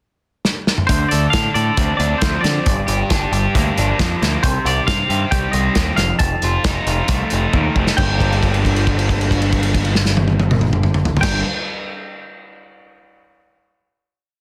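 A loose indie drum kit opens with a short fill at 0.4 s and settles into a straight indie four groove at 136 BPM, its tight kick and dark cymbals sitting up front in this brief, bittersweet and moody indie rock piece in G minor. From 0.9 s a growling, overdriven bass drives eighth notes underneath, a crunchy, double-tracked overdriven guitar picks arpeggios through spring reverb, and a twangy, clean, compressed lead guitar states a motif-based melody with spring reverb and digital delay over Dm7, Gm7, Cm and F7. A very quiet, lush string machine pad enters at 4.4 s, and after a second drum fill the whole band lands on a held Gm7 at 8.0 s, all packed into a dense, heavily limited modern master with little room sound.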